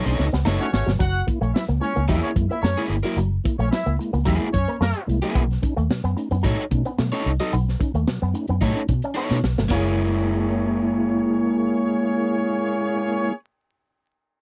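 A straight 4/4 breakbeat groove struts through this funky section cut from a longer piece: the saturated, gritty drum kit opens with a band accent and fill and stops at 9.8 seconds, while a dark, foam-muted fingered bass sits up front. A crunchy overdriven guitar plays accompaniment, a bright, twangy envelope-filtered guitar with phaser carries the riff until 9.9 seconds, and a mellow, flute-like tonewheel organ adds stabs with chorus vibrato, key click and a stopped rotary speaker. A tight, distant horn section in octave doubling plays a second line and returns at 9.7 seconds, heard in a dry, close 1970s-style studio sound with vinyl crackle.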